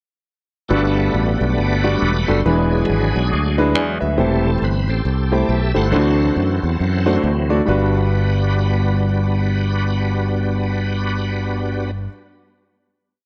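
A bright, shouting tonewheel organ with slow rotary speaker, chorus vibrato and key click takes the solo over a breakdown until 7.7 seconds in this short, uplifting and reverent uptempo gospel piece in G major at 138 BPM with a swung feel, backed by a clear concert grand piano pushing drop-2 chords with grace notes and short fills and a growly, punchy fingered electric bass walking and running with slides, before all three settle on a final Gmaj7 chord in light studio reverb.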